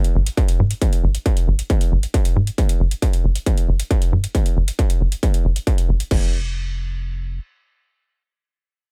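A tight, punchy sequencer bass drives this uplifting trance excerpt, its nasal sawtooth and square-wave tone plucked by a fast-attack filter and pumping against the beat from 0.2 seconds, while a filter sweep on an analog synth bass runs through the opening section. A distorted, layered electronic kick sits up front, while a techno kit adds metallic hats and crash cymbal in a small room, both pumping, until the drums stop at 6.2 seconds. The mood is bittersweet and soaring, the overall sound is dry, and the bass carries on into the next section before dropping out at 7.4 seconds.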